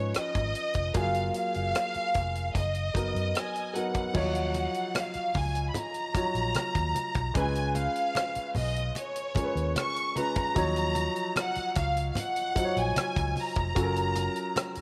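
A rich, bowed violin section carries the smooth, even melody with vibrato over a grand piano, a round, foam-muted electric bass, a tight funk drum kit with dark cymbals, and low-tuned congas that enter softly at 4.5 s, giving this cinematic, lush 1970s-style soul excerpt at 75 BPM a polished studio glow under light reverb.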